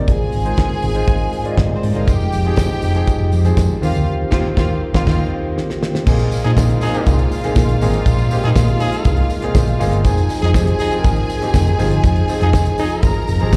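Heard as a live gig through the venue's PA with recital hall reverb, this danceable, driving disco cut at 120 BPM rides a dry, fat-snared 70s drum kit and a dark, punchy hollow-body bass up front, with a present grand piano and lush bowed strings, both carrying slapback echo, over a round tonewheel organ with chorus vibrato and slow rotary speaker, a jingly tambourine entering at 2.1 seconds, a band accent and drum fill leading into the second section at 6.1 seconds, where loose, mellow horn stabs arrive at 6.4 seconds, and a piano fill around 9.3 seconds.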